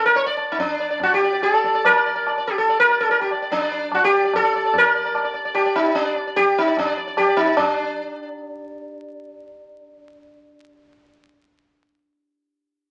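Bright, buzzing sitar sits up front with a shimmering, round tone and sympathetic strings, carrying a serene, meditative Hindustani classical melody between D4 and D5 in a straight 7/4 that gradually speeds up. High-tuned tabla with a live-room ring joins at 0.2 seconds, sitting well behind the sitar, and drops out at 7.7 seconds as the music moves into a new section, leaving the sitar alone. The short excerpt has a moderate studio reverb and the crackle of a very old 78 rpm record.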